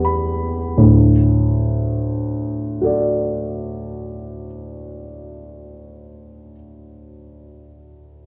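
A dark, mellow concert grand piano sits up front with deep bass across a span from D2 to D7, playing alone through this short 8.3-second cut from a longer impressionist classical solo piece in D major at a slow, rubato 29 BPM in 4/4, its hazy, luminous mood set by an A9sus4 chord that resolves to D at 0.8 seconds and blooms into a lush recital hall reverb.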